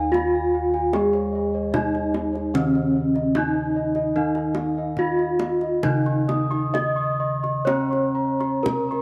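This short, serene passage of Javanese gamelan, cut from a longer piece, opens with a dark, smooth bronze metallophone carrying the melody up front, its paired tuning producing shimmering beats. Beneath it, a second metallophone struck with wooden mallets rings out an accompaniment. A mellow, band-limited metallophone played with padded disc mallets and a set of soft, round bossed gongs with a slapback echo spin arpeggios overhead, while lower bossed gongs give a beating bronze bass. A tight, softly hand-played kendang enters at 0.1 seconds, and the whole ensemble sits in a moderate echo-chamber reverb.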